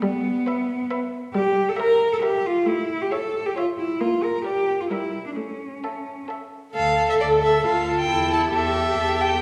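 A close, up-front cello with an airy bow and a soft-attacked viola with sliding portamento open this restless, dramatic classical-period string quartet movement in quick 3/4 at 134 BPM, with two violins joining at 0.5 s: one carrying a smooth, vibrato-rich melody up high and the other singing an expressive second line. Tense diminished harmonies and a dark turn to B-flat push toward a new section at 6.7 s that moves into D minor. The quartet is heard from further back in a reverberant recital hall, in a short fragment cut from a longer piece.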